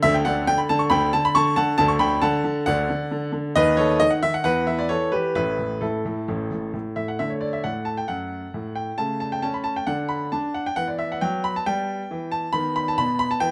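A playful, cheerful classical-period piano sonatina in D major, moving at a brisk 135 BPM in a straight 4/4, cut from a longer piece. A solo grand piano, clear and natural, sits up front across a span from A1 to C#6, its harmony passing from a lush Dmaj13 opening through B7/D# and Em to an open A5 before the second section begins at 7.2 seconds on D, drifts through a brief unharmonized moment, and closes on B/D#. Close, detailed miking and light reverb keep every note crisp and present.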